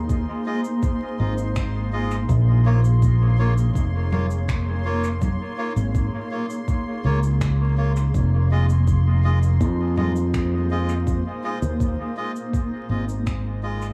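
A straight 4/4 groove at 82 BPM in F minor rides on a soft, overdriven electronic kick, with overdriven electronic cabasa, finger snaps and congas trailing dub echo, while a punchy, up-front fingered electric bass anchors this meditative, deep ambient dub fragment. A blurred, evolving granular cloud pad holds sustained chords moving from Fm7 to Bbm at 2.3 seconds and back at 8.1 seconds, and a reedy, breathy melodica drops echoing stabs. A resonant, bubbling stepped-filter texture with chorus sits in the background of the echo-heavy, vinyl-crackled mix, which fades out from 12.0 seconds.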